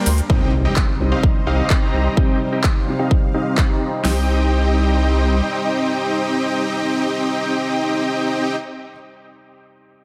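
A lightly reverberant digital ambience frames this short cut from a longer festival progressive house track in C minor, moving at 128 BPM in a straight 4/4 with an emotional, anthemic mood. A huge, detuned supersaw riff sits up front from the start, compressed and pumping against the sidechain, with a low-pass filter sweep across its opening seconds and dub echo trailing its notes. Behind it, a lush unison pad holds bright sustained chords through chorus and phaser, while a felt-muted upright piano adds a soft, mellow, vintage accompaniment in the background, also pumping and echoing, and it carries on alone past the other parts to the close at 10.0 s. A deep, saturated sine sub bass anchors the low end until 5.4 s, and two layered, overdriven big-room drum kits drive the first few seconds, one with a punchy kick, huge snare and metallic hats up front, the other adding handclaps and shaker. 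A very quiet electronic impact marks the entry at 0.3 s on a C minor chord, after which the drums drop away and the synths and piano carry the passage onward.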